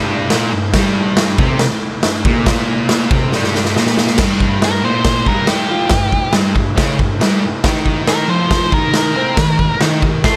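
A thick, double-tracked fuzz guitar drives this gritty, raw garage rock excerpt, its picked riff in G minor sitting up front from the first moment and ranging from G2 to C5. At a straight 139 BPM in 4/4, a raw acoustic drum kit joins at 0.3 seconds with a punchy kick, a medium-tuned snare and crash cymbal, its saturated sound carrying a pumping, bright stone-room character and a rolled-off top. A drum fill from 3.3 to 4.2 seconds leads into a new section, and at 4.6 seconds a dark octave-fuzz lead guitar enters with a picked melody reaching up to C6, sitting a little behind the riff. The harmony holds on G minor before moving to an E-flat power chord at 7.6 seconds. A light studio reverb frames the whole band, and the excerpt ends at 10.4 seconds, cut from a longer piece.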